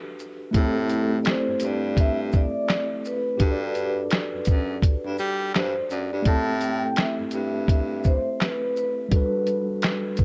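A mellow tine electric piano, heard as if through built-in speakers, opens this hazy, nostalgic lo-fi hip hop excerpt before a muffled, gritty sampler-style drum kit with thumpy kick, snare, handclaps, hi-hat and shaker settles up front in a swung groove, a breathy, whispered baritone saxophone with vibrato carries the bass line from 0.5 to 8.2 seconds, and a ringing vibraphone played with soft mallets and slow motor vibrato takes the melody from 1.2 seconds, set in light reverb with a cassette-tape character.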